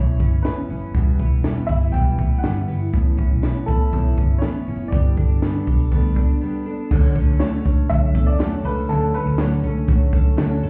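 Heard as if muffled through a wall, with club reverb and a faint vinyl crackle over the mix, this short cut from a longer jangly indie pop piece feels nostalgic and youthful, moving at 121 BPM in a straight 4/4 in D major. A woody, slightly detuned upright piano carries the melody with intimate, audible action noise, while a shimmering, octave-doubled fingerpicked twelve-string acoustic guitar and a bright, twangy, compressed twelve-string electric guitar playing arpeggios fill out the middle, all three touched with plate reverb. Up front, a round, foam-muted vintage electric bass gives a dark, amped, punchy bottom, and a dry compact cocktail kit joins at 0.2 seconds with a high-tuned snare, a punchy kick, hi-hat and dark crash cymbals. The harmony moves through Aadd9, Em and Gadd9 before a brief break at 6.4 seconds opens onto a Dmaj7 passage. There, a crisp group handclap, very quiet and small-roomed, joins at 7.4 seconds.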